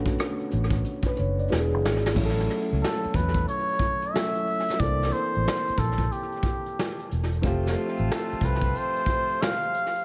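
An echo-heavy mix bathed in moderate spring reverb gives this short slice of relaxed, smooth neo-soul R&B a vintage, tape-tinged sheen. At 91 BPM in 4/4 with a swung sixteenth feel, a brush drum kit sits up front with dark cymbals, a punchy kick and a rolled-off top, while a muted fingered electric bass supplies a round, foam-damped low end and a dark, mellow grand piano with long sustain and tape echo fills in the harmony, moving from Bm9/A and E7 through A6, C13 and Fadd9. After a drum fill closes the opening phrase, a cup-muted trumpet enters at 2.8 seconds as the soft, veiled solo voice, shaped by light vibrato and a gentle attack in a jazz style. At 7.4 seconds a warm, distant horn section adds tight, roomy stabs, and the bass drops out at 8.7 seconds as the passage carries on toward its cut.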